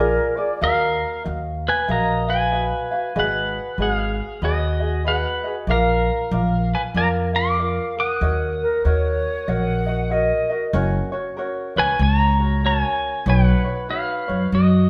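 A live band shares one stone room whose reverb gives the whole piece a soft, echoing glow. This short, dreamy Hawaiian cut from a longer piece moves at a relaxed 95 BPM in 4/4 with a gentle swing, sitting in Eb minor before shifting to F# major at 10.7 seconds. A bright, clean electric pedal steel guitar carries the melody up front from 0.6 seconds, played with fingerpicks and slide, its compressed tone shaped by volume swells. Beneath it, a light, thumb-plucked acoustic ukulele plucks the chords throughout, while a woody pizzicato upright bass with steel strings sits prominently at the bottom. A mellow, airy metal jazz flute adds a distant, expressive second line with vibrato and tongued notes, appearing briefly at the start and returning at 8.6 seconds.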